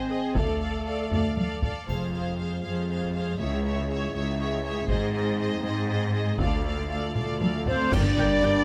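A relentless taiko ensemble struck with heavy sticks drives this heroic, epic orchestral film score in 6/8 at 80 BPM, entering at 0.4 seconds beneath an up-front cello section and background double basses carrying the bass, while lush, vibrato-rich violin sections share the melody and second line over expressive violas and dark, distant French horns sustaining chords through Dm, Fm, Dbm and Ab. Drum fills lead into round, soft-mallet timpani and bright, dry cymbals with triangle and concert bass drum, first at 1.9 seconds. At 7.7 seconds a pure silver flute and smooth-topped dark trumpets join, followed by soft-attack trombones, for a band accent on Gm in this close, detailed recording with light reverb, cut from a longer piece.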